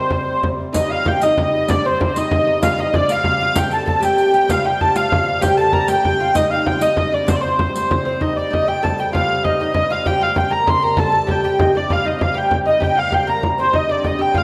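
A straight 6/8 pulse drives this medieval dance, and it gathers speed throughout, giving the music an ancient, driving character. Up front, a dark, nasal hurdy-gurdy carries the melody with a boxy, wheel-bowed tone, while a mellow, airy tenor recorder with vibrato and a crisp chiff sits in the background on a second line. A fretless oud adds a deep, plectrum-plucked second line from its double strings, and a reedy, breathing hand-pumped harmonium holds a low drone beneath. A close, dry frame drum sits up front from the start, joined at 0.7 s by a riq, its jingles played with soft hands until 7.9 s, and the tune moves into a new section at 8.2 s. A wet recital hall reverb surrounds the ensemble, and lossy compression artefacts colour the sound of this passage cut from a longer piece.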